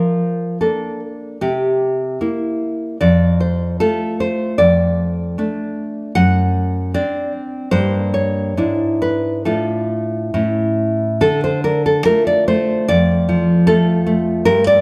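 A fingerpicked nylon-string guitar carries this short, cut-off passage alone, its full-bodied, deep classical tone placed up front. The romantic piece moves in 2/4 with a free rubato feel, and its mood is melancholic yet passionate. The guitar ranges from F2 to F#5, and the harmony darkens at 4.6 s, passing through chords such as D7/F#, Gm and E7/G# before settling on A. A new section begins at 11.2 s, dwelling on Dm. The guitar sits in a moderate recital hall reverb that rings for about 1.7 s.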